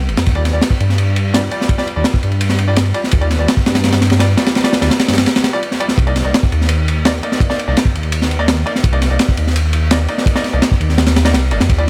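Dry and close, this raw, atmospheric drum and bass and jungle passage at 168 BPM in C minor sets a deep, rumbling detuned saw bass under a crunchy, saturated breakbeat kit of tight kick, high-tuned snare and dark ride cymbal, while a clear baby grand piano plays stabs coated in vintage 12-bit sampler grit and dub echo, shifting from Ebmaj9 to Cm9 after a brief break at 5.3 seconds.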